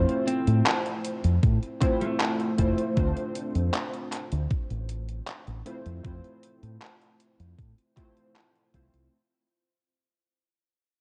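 Faded and woozy, this vaporwave fragment cut from a longer piece drifts through a fade-out over Fmaj7 and Dm7 chords, with warbling, detuned synth keys under analog chorus and tape echo, a round, punchy dub bass played with the fingers, an overdriven, gritty 8-bit drum machine of handclaps and hi-hat in gated reverb, a thumpy electronic kick entering at 1.4 s, and a dark, slightly broken-up guitar lead that plays only from 0.3 to 3.0 s, all set in light reverb with a cassette tape sound.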